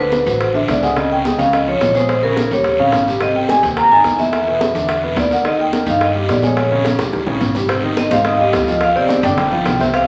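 A vintage, band-limited vibraphone sits up front with the melody from the opening moment, its metallic, ringing tone shimmering with a slow motor vibrato over a warm concert grand piano's accompaniment and a woody, thumpy pizzicato upright bass. This sunny, sophisticated Afro-Cuban jazz excerpt moves at a brisk straight 4/4 as tight, high-tuned bongos, bright damped congas in the background and a raspy, close guiro join at 0.1 seconds, with a drum fill leading into a new section at 7.7 seconds. A wet studio reverb and a layer of vinyl crackle give the whole a lived-in, nostalgic glow.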